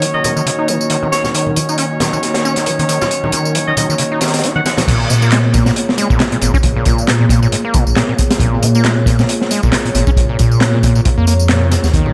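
A crunchy, saturated breakbeat kit with a high-tuned snare and tight kick drives this funky, gritty 136 BPM breaks excerpt in Bb minor, joined by a squelchy overdriven acid bass riff under a filter sweep, a moody detuned pad, electronic tambourine and handclaps, and, until 4.9 seconds, mellow horn stabs, damped congas and a vintage-toned alto saxophone melody in the background, before a rumbling detuned saw bass arrives for the drop in an echo-heavy, small-room mix.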